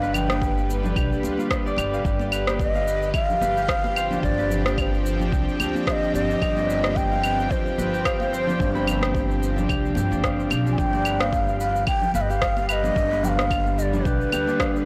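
Organic downtempo at 110 BPM in 4/4 with a light sixteenth-note swing, this meditative, earthy excerpt sits on a G7 that moves to Fsus2/G at 2.1 seconds and returns to G7 at 10.8 seconds. A breathy, mellow ney carries the melody with soft attacks and vibrato, its reedy tone trailed by tape echo. Beneath it, a concert harp rings out fingerpicked arpeggios, also with tape echo, while a tense, string-like drone holds sustained chords with a slow attack, vibrato, its own reverb and sidechain pumping. A woody, thumpy upright bass plays pizzicato on gut strings and also carries sidechain pumping, with its final note ending at 14.4 seconds. The rhythm section blends overdriven electronic cabasa, claves and rim click with a deep electronic kick that enters at 0.4 seconds, both re-recorded in a small room, while compressed, saturated congas played with soft hands sit in the background. The whole mix has a light small-room ambience and a blown-out, overdriven sound.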